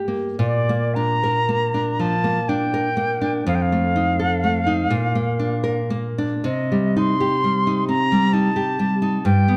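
Solemn and elegiac, this romantic duo in Bb major moves in a slow, rubato 6/8 at 33-45 BPM in dotted quarters, the nylon-string classical guitar opening alone with a fingerpicked accompaniment, audible finger squeaks and a bright tone before the concert flute enters at 0.4 seconds. The flute carries the melody up front with an airy, close-miked sound, soft attack and expressive vibrato, while the guitar sits equally forward beneath it over a Bb, F7, Bb and Cm progression. A moderate recital-hall reverb and a dark, warm production frame this short excerpt, which is cut from a longer piece.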